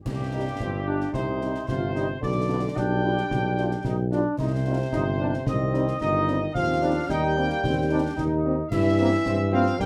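Captured with a moderate booth ambience and a short decay, this stern, resolute military-style march for wind band moves in a straight two-beat metre and is cut from a longer piece. A punchy, tight trumpet section with light vibrato carries the melody, while an up-front, mellow tuba with a soft attack holds the bass, a close-miked euphonium with vibrato sings a second line in the background, and a sombre, distant French horn section adds accompaniment from 0.3 seconds. A smooth-topped trombone section sustains chords from 0.6 seconds, and concert snare drum, clash cymbals and concert bass drum, with dark-toned cymbals, drive the march with a live-room sound.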